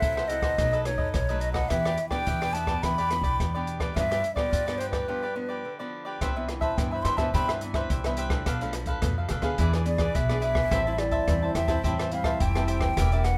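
A straight 4/4 groove at 107 BPM drives this lively, sunny samba and choro in C major, cut from a longer piece, with an up-front open jazz drum kit (dark, smooth hi-hat and rim click over a boomy kick) and a woody pizzicato upright bass on steel strings anchoring the bottom. A crisp picked cavaquinho and a small, bright fingerpicked nylon-string guitar fill the accompaniment, while a close-miked silver concert flute carries the melody with a breathy, mellow, hollow tone, tongued notes and vibrato. After a break at 5.1 seconds, the flute takes a solo from 6.2 seconds as the harmony moves to a Cmaj9, all set in light reverb.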